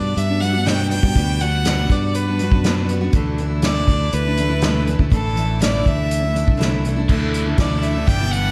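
Nostalgic and warm, this folk rock and heartland rock passage, cut from a longer piece, moves in a straight 4/4 over a Gmaj7 chord that gives way to Dsus2 at 3.1 seconds. A clear, focused fiddle carries the melody with light vibrato, bowed by a single player and touched by slapback and tape echo. Beneath it, a picked steel-string dreadnought acoustic guitar supplies the accompaniment, its finger squeaks audible through a slapback echo. A round, punchy fingered electric bass anchors the low end, while a distant, roomy acoustic drum kit played with bundle sticks adds a punchy kick, a medium-tuned snare, hi-hat and dark crash cymbals. At 7.1 seconds a bright, crunchy overdriven guitar enters in the background with a double-tracked riff and slapback echo, and throughout, the whole mix sits in a moderate, lush hall reverb with a big arena sound.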